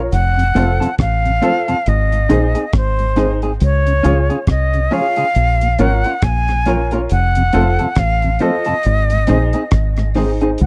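A woody, slightly detuned upright piano plays stabs over a round, foam-muted fingered electric bass as this laid-back, uplifting roots reggae excerpt opens at 69 BPM, with a dry, dark drum kit of tight kick, hi-hat and rim click close behind. An airy, expressive jazz flute with a soft attack and vibrato carries the melody up front. A mellow tonewheel organ, lightly overdriven with chorus vibrato and a slow rotary speaker, and a picked, compressed electric guitar on the edge of break-up fill in the accompaniment over F, Ab, Db and Bbm chords, all in a close, small-room 1970s-style studio sound.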